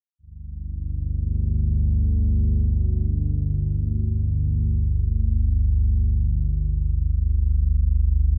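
An analog drone dominates this brief ambient fragment, entering at 0.4 seconds with a slow attack and sustaining until 8.4 seconds. Built from sawtooth and pulse waves with pulse-width modulation, its warm, resonant, evolving tone sits low in the register, between G1 and D2, and is placed up front in the mix with a subtle chorus adding gentle movement. The harmony rests on a single G5 chord, giving the piece a heavy stillness. A huge, wet ambient reverb with a decay of 8.1 seconds surrounds the sound, making the space feel cavernous and vast. The mood is ominous, as if this were a moment lifted from a longer piece.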